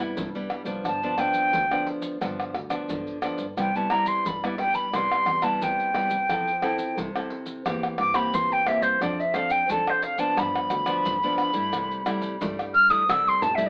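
A fingerpicked nylon-string guitar with a classical touch and a dark, woody bowed double bass with vibrato, kept in the background, open this festive, lively samba and choro excerpt at 0.0 seconds, joined almost at once by maracas, a deep surdo, pandeiro and tamborim played with soft hands in a small room. At 0.9 seconds a pure, silver concert flute enters up front with a soft attack and vibrato, carrying the melody high over a progression of major sevenths, sixths and dominant chords. The band plays live in one room with moderate reverb and a lo-fi AM radio tint, and a drum fill at 13.1 seconds closes the passage.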